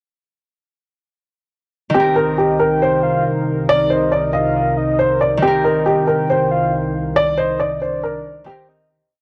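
A woody, mellow upright piano loop and bright, ringing Celtic harp chords open at 1.9 s on Cm7, setting a dark, menacing half-time drill beat at 138 BPM in C minor, while a warbling, nostalgic tape-like pad holds sustained chords and a round, octave-layered synth lead with chorus, vibrato and tape echo adds a sparse counter-melody, all within a gritty, cassette-toned breakdown that fades out from 7.2 s.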